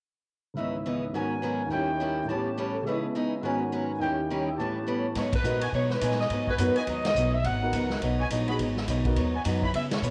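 A clear saxophone section carries the melody from 5.2 seconds, its smooth top and light vibrato tinged by a cassette tape character, in this sultry, dramatic big band swing excerpt in G# minor at 209 BPM. Before it arrives, a grand piano with audible action noise, a boxy, up-front picked archtop guitar with finger squeak, and a trumpet section punching out stabs with light vibrato move through a cycle of C#m9, G#m11, D#7b9 and A9 chords, twice over. At 5.2 seconds, as the harmony settles on G#m7, a woody pizzicato upright bass and a distant, roomy big-band drum kit with a punchy kick, medium-tuned snare, hi-hat and ride cymbal join the saxophones. Band accents land at 5.3, 7.0 and 9.9 seconds. A moderate spring reverb and a home recording on cassette shape the sound, and the excerpt is cut from a longer piece.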